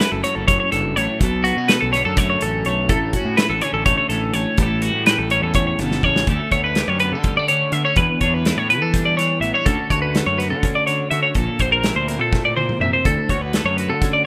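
Intricate and wistful, this math rock and midwest emo excerpt moves in an odd 7/8 metre, with a bright twelve-string electric guitar spinning clean arpeggios through spring reverb above a second twelve-string that plays twangy accompaniment through analog chorus. A loose indie drum kit with a tight kick and pumping room sound sits up front, adding fills at 5.9 and 12.3 seconds, while a dark, round fuzz bass with overdrive punches underneath. The rough home-demo mix sits in a small room, and the harmony turns from F#m7 through lush major-seventh and ninth chords, including a striking Bbmaj9#11 at 11.4 seconds.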